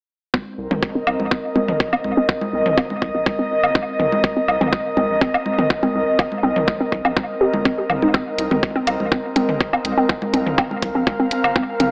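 A tight, overdriven electronic kick drives this straight 4/4 minimal techno excerpt at 123 BPM, sitting up front with studio reverb, while layered electronic congas, toms and woodblock add a tape-tinged percussion bed through analog delay. Underneath, a round, dark analog bass in the G1 to C2 range enters at 0.6 s, its tube-saturated tone sustained and pumping as a filter sweep moves through it. A hollow, nasal square-wave pluck carries the riff between C4 and G4, bouncy and detuned with a moving notch, chorus, sidechain pumping and dub echo, and a filter sweep runs across it. An airy, breathy pad spans C4 to F5, soft yet bright and up front, with a slow attack, long release and chorus, pumping over a single Cm7 chord. At 8.4 s an overdriven electronic hi-hat joins. The whole mix has an echo-heavy, AM-radio character in a moderate echo chamber, giving this piece a hypnotic, clinical mood in C minor.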